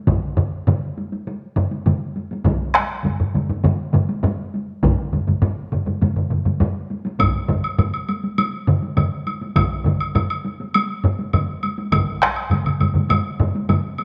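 A close, dry taiko drum struck with hard sticks sits up front in this powerful, driving excerpt of Japanese traditional taiko ensemble music, moving at 101 BPM in a straight 4/4. Around it, three more taiko parts fill a small room, one also played with hard sticks and two with heavy sticks, one of those heard in a livelier room sound. A woody woodblock joins at 7.2 seconds, and the whole ensemble sits in a wet echo-chamber reverb with small-room ambience.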